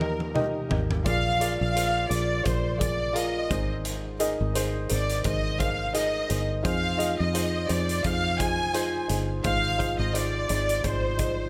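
A drum fill on a punchy acoustic kit opens this excerpt of piano-driven pop, running from 0.0 to 1.1 seconds, while the violin section, piano and bass all sound from the very start. The mood is warm and hopeful, set at 86 BPM in 4/4 with a light swing on the sixteenths. Up front, a lush bowed violin section carries the melody between Bb4 and Ab5 with smooth, even vibrato. Also up front, a dark, woody upright piano plays the accompaniment, its slightly detuned, worn tone and audible action noise giving it an intimate feel. A round, foam-muted fingered electric bass holds the low end, and the kit's hi-hat, kick and toms sit lower in the mix in a pumping room sound, all within a small room and light reverb. The harmony moves from Eb through Bb7, Abadd9 and Fm7 before resting on Ab6, and this fragment of a longer piece stops at 11.5 seconds.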